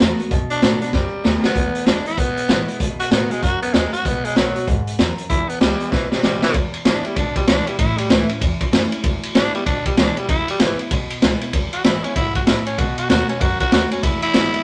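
Rowdy and rollicking, this swung rockabilly excerpt is driven by a raw garage drum kit set up front, with a high-tuned snare, punchy kick and saturated, gritty small-room sound, throwing in fills at 0.9 and 5.9 seconds. A growling tenor saxophone enters at 0.5 seconds to take the solo melody up front, bright, breathy and raspy with a light vibrato. Underneath, a full-bodied picked steel-string acoustic guitar picks out the accompaniment while a woody, thumpy pizzicato upright bass sits in the background, all under a light reverb.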